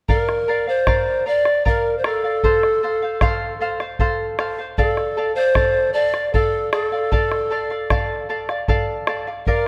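Andean folk in D minor at 77 BPM in a straight 3/4, this earthy, festive excerpt features a hollow, polished pan flute with a pure, tongued tone carrying the melody up front, a bright, shimmering fingerpicked charango with double strings picking out the Bb, F and D minor accompaniment, and a deep, dark, dry bombo supplying the percussion, all captured close and detailed with light reverb.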